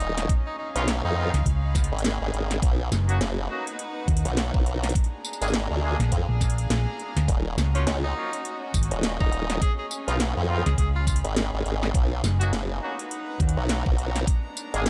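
A saturated, wobbling formant-sweep bass with chorus sits up front in this gritty, playful glitch hop excerpt, joined by a round, punchy hollow-body electric bass. Together they ride a swung groove of knocking electronic kick, cracking snare, metallic hi-hats and tambourine over a cycle of Db7, Bmaj7, Bb7 and Ebm7. An edgy, forceful tenor saxophone with diffuse ambient delay takes jazz-style phrases at 0.0 and again from 7.7 to 11.2 seconds, while very quiet, brilliant horn stabs and a gut-strung chamber string section pumping in the background fill out the texture.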